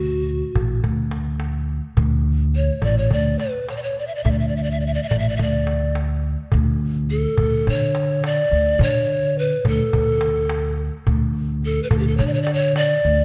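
A breathy, hollow bamboo pan flute carries the melody from the opening moment, close and up front with soft attacks, a touch of chiff and gentle vibrato, while a woody, growly pizzicato upright bass sounds beneath it in this stately, festive Turkish makam ensemble piece. A clay-shell darbuka with a natural skin enters at 0.3 seconds, struck with hard hands, and the music shifts into a new section at 6.5 seconds. A moderate concert hall reverb gives the short cut from a longer piece a spacious finish.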